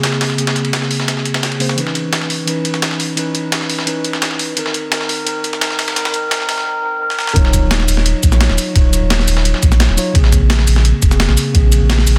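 A mellow tine electric piano sits up front in this melancholic, dreamy liquid drum and bass excerpt at 172 BPM in 4/4. Its clean chords carry a touch of delay and move through Bbm9, Dbm9, Cm7/Eb and Ebm9 in Eb dorian. Two sampler-style drum kits run beneath it from the start. One is a breakbeat kit of cabasa, hi-hat and snare. The other is a quieter dusty soul kit of ride cymbal and snare. Both are gritty and compressed, re-recorded in a small room, and high-pass filtered on their snares, cymbals and room sound. That opening stretch works as a build-up, capped by a drum fill at 7.1 seconds. At 7.4 seconds the drop lands, bringing in a thumpy, tape-toned electronic kick and a deep, round sine sub bass that sits loud and up front. Light reverb and a dense, heavily limited modern master frame the whole passage, which is cut from a longer piece.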